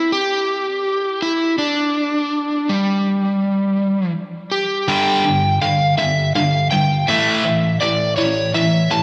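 Soaked in a lush, dreamy hall reverb, this soaring, euphoric rock excerpt in 6/8 at 54 BPM (dotted quarters) opens with an up-front overdriven slide guitar carrying the melody alone through tape echo, until a bright, double-tracked distorted guitar enters at 4.9 seconds with a tight riff on G5 that moves to A5 at 7.1 seconds, building up until the piece cuts off at 9.0 seconds.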